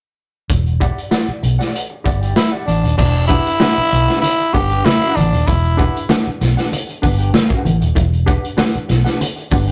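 A rough rehearsal-room sound with tube saturation and moderate reverb frames this sly, hypnotic funk fragment built on an Em9 chord. Up front, a dark, round, foam-muted fingered bass and a saturated, punchy garage drum kit of crash, hi-hat, kick and snare carry the groove, while a mellow, clean electric guitar with tremolo adds accompaniment. A raspy, growling tenor saxophone with light vibrato takes a short solo from 2.4 to 6.1 seconds, and ringing, low-tuned congas played with soft hands join in the background at 3.0 seconds.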